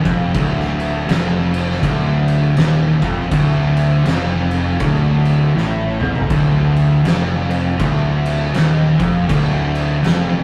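A raw, bright garage guitar with overdrive, double-tracked, plays a Dm riff in D phrygian at 80 BPM with a swung 4/4 feel in this ominous, hypnotic stoner and doom metal excerpt, alongside two dark, distorted fuzz guitars sitting in the background. A growly, fingered fuzz bass holds the low end beneath an oversized, low-tuned acoustic drum kit with a fat snare, punchy kick, crashes and toms, which plays a fill at 5.6 seconds. The excerpt has a rough rehearsal-room sound, with tube saturation and a moderate stone room reverb.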